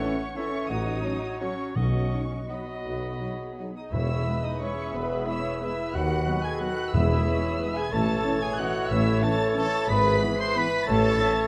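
In a 3/4 with rubato at 158-198 BPM, this sweeping, festive orchestral ballroom waltz in E major sets a muted, veiled violin section on the melody over flute, clarinet, cor anglais and a second violin line, with violas and a bassoon accompanying, mellow French horn chords, cellos joined at 0.7 seconds by tuba and double basses on the bass, round soft-mallet timpani, and a close, tight trumpet section adding stabs from 3.8 seconds, all in light reverb.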